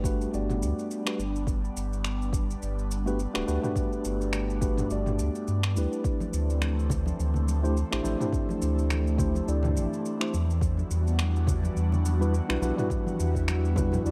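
Warm and sunny, this short sunset chillout cut moves at 105 BPM in G major with a 16th-note swing, drifting through Gmaj7, D9sus4 and Em9 chords. A mellow, clean tine electric piano with tape echo sits up front beside a round, deep sine sub bass with tube saturation, while an airy, breathy pad with chorus and phaser holds soft, detuned sustained chords beneath. An overdriven electronic kick and a deep house kit of finger snaps, shaker and toms, both re-recorded in a small room, carry the groove under light reverb, and ringing, close congas join in the background at 6.2 seconds.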